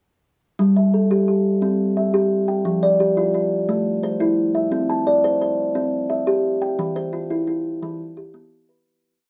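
This short, whole piece of Southern African traditional music is built on an mbira-style interlocking cycle, with a warm, rippling mood. It moves at 116 BPM counted in dotted quarters, in a straight 12/8 metre, and is tuned slightly under standard pitch, at A4 = 439 Hz. A lone kalimba carries everything, entering at 0.6 seconds and weaving an interlocking ostinato from its low E3 up to A5. Its fingertip plucks sound woody and mellow, with a hollow-box resonance and a soft, ringing, vintage, band-limited character, placed up front in a light reverb. The harmony drifts through Emadd11/G, C, Dmadd11/F, Am and C before settling on Em as the sound fades out from 6.8 seconds to 8.9 seconds.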